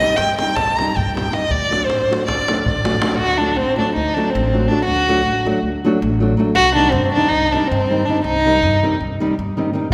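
A single bowed violin, dark and woody with vibrato, carries a bittersweet, fiery melody up front over small, fingerpicked nylon-string guitar, warm pizzicato upright bass and a tight davul that drops out at 3.1 s and returns at 9.9 s, in this fragment of Balkan wedding-band folk in 9/8 at 321 BPM counted in eighths, moving from C minor to D and back in the long, wet reverb of a concert hall.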